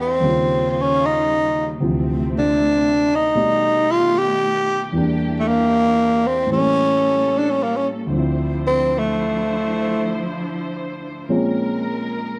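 This slow, intimate jazz ballad in D minor opens at 76 BPM with a swung feel: a breathy, raspy tenor saxophone sits up front with scooped, growling notes and plate reverb, over a mellow, deep-toned grand piano with short sustain and a veiled, distant bank of muted strings bowing lush sustained chords with vibrato. The melancholic harmony moves through colours such as Eb9, B7alt and A7b9 before settling on Dm9 at 8.1 seconds, where the saxophone begins a solo that stops at 10.3 seconds. Piano and strings carry on to the end of this fragment at 12.4 seconds in a moderate studio ambience.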